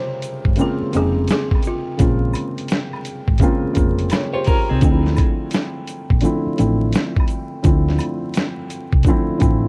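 A swung 85 BPM lo-fi hip hop groove in D minor from a gritty, sampler-style drum kit with a thumpy kick sets a reflective, nostalgic mood, carried by a round hollow-body bass and a felt-muted upright piano with audible action noise, while a buzzing, woody kalimba plays the melody until 3.7 seconds, a clean electric guitar adds a short tremolo-and-delay line from 4.3 to 5.0 seconds, and a tube shaker and woodblock sit in the background of a dark, crackling vinyl-toned mix.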